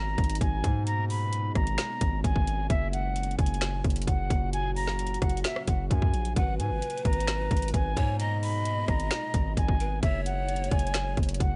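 A distorted 808-style bass anchors this melancholic, hard-hitting trap excerpt, its saturated, aggressive sine tone with a noise layer sitting up front and decaying after each fast attack. The trap drum kit enters at 0.2 seconds with a hard-clipped kick, woody snare, metallic hats, finger snaps and rim clicks, all tape-tinged and close in the mix, driving a half-time feel at 131 BPM in G# minor. Above, a breathy concert flute carries the melody with a straight tone and soft attack, close-miked and softened by a low-pass filter. A deep, moody ambient pad holds sustained chords in the background, its sawtooth-and-sine body thickened by chorus and its own reverb as the harmony moves between G#madd9 and F#. At 6.4 seconds a mellow bamboo pan flute joins with a second line, expressive with vibrato, tongued chiff and a delay trailing its notes. The overall sound is dry and dark-topped, with the low end and drums pushed forward.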